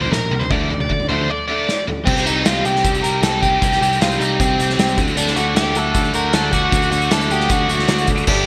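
Bright 1980s-style digital production with a lush hall reverb frames this moody, cool indie rock clip at 154 BPM, where an up-front crunchy overdriven guitar carries the melody with analog chorus over a lo-fi, slightly broken-up guitar through a small old amp, a scooped high-gain guitar riffing with distortion and chorus, a growly picked electric bass, and a loose acoustic drum kit with punchy kick, dark cymbals and gated reverb that plays a fill at 1.7 seconds, before a ringing, bell-like glockenspiel with brass mallets enters in the background at 4.4 seconds with a smooth second line.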